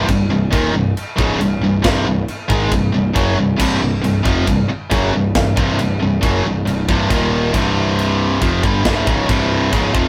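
A tight, bright distorted guitar sits up front in this relentless heavy metal excerpt, picking a low riff in a half-time feel from the very start. Behind it, a second high-gain guitar plays a riff in the same register, adding a bright, distorted layer further back in the mix. A growling electric bass, warm and overdriven, anchors the bottom end throughout. The acoustic drum kit has a polished, airy big-room character, with a tight kick, a medium-tuned snare, and sparkling crash and china cymbals driving the heavy pulse. The harmony holds on C minor before shifting to Eb5 at 7.1 seconds and then to C5 at 7.5 seconds. Light reverb and a rough rehearsal-room quality give the whole piece a raw, live edge.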